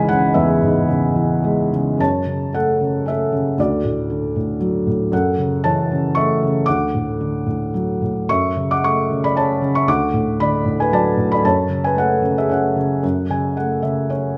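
In a 3/4 at 114 BPM, played with a free rubato feel, this brooding, bittersweet classical piece for solo piano unfolds in F# minor. A felt-muted upright piano carries everything alone across the whole 14.4 seconds, its thick-felted tone soft, mellow and intimate, sitting close and up front in the sound. The part ranges from C#2 up to D6. After an opening on C#m7, the harmony settles into a gentle back-and-forth between F#m7 and D, colouring toward D6 before coming to rest on a plain F#m. Near the end, from 13.0 seconds, a short piano fill rounds off the phrase. A moderate recital-hall reverb lends a soft halo around the instrument, and the excerpt is cut from a longer piece.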